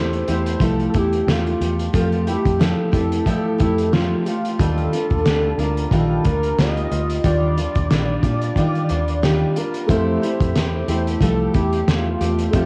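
A velvety synth lead carries the melody from the first moment, over picked steel-string acoustic guitar and a muted, round electric bass, with a cloth-damped drum kit of kick, snare and hi-hat joining at 0.1 seconds. This sunny, nostalgic slice of indie bedroom pop moves at 90 BPM in 4/4 with a gentle 16th-note swing, cut from a longer piece in F major. The chords drift from Fmaj9 to Ebmaj9 at 4.6 seconds and back to Fmaj9. The sawtooth-based lead has a detuned, smooth sustain with vibrato, subtle chorus and tape echo, while the full-bodied jumbo guitar sits up front with chorus and a warbly pitch drift. The drums are thuddy, muffled and gritty with a fat snare and tight kick, and at 9.9 seconds a dark, woody upright piano enters in the background, slightly detuned with audible action noise. Cassette tape colour on the lead, guitar, drums and piano, plus light reverb, gives the home recording a nostalgic charm.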